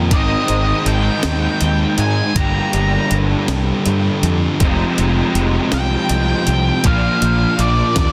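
A dense, heavily limited modern master with little reverb opens this short indie rock excerpt, jangly and upbeat in a straight 6/8 at 53 BPM (dotted quarters), moving through Ab, Gm, Fm7 and Bb. A bright, up-front thick fuzz guitar and a crunchy overdriven guitar with ensemble chorus share the riff, while a growly, up-front fuzz fingered electric bass carries the low end. From 0.1 seconds an octave-fuzz lead guitar plays the melody high above over a gritty, pitched-up breakbeat sampler-style kit with a thumpy kick, medium-tuned snare and hi-hat, compressed and re-recorded in a small room.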